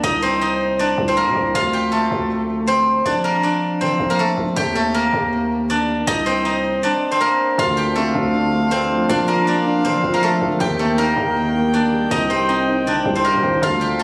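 Hip hop with a brooding, melancholic half-time feel, where a silvery, fingerpicked steel-string zither carries the melody up front over a growling, buzzy 808-style bass, joined at 7.6 seconds by a dark, boxy concert grand piano with audible action noise and a bright classical-style brass ensemble holding sustained chords, all in light studio reverb with a compressed, phone-in-the-room sound, cut from a longer piece.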